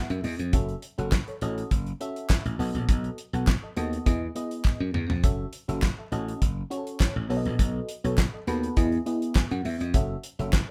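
Early-eighties boogie funk at 102 BPM in F# dorian with a slick, late-night mood, this short cut opens on a warbling, mellow FM electric piano fill treated with phaser over Emaj7, F#m7 and B7 changes, joined by a growly, punchy slap bass and a dry, polished 70s drum kit with a fat snare and tight kick that plays a fill at 4.7 seconds, while a crisp group handclap enters at 1.1 seconds in the background of a lightly reverberant live room.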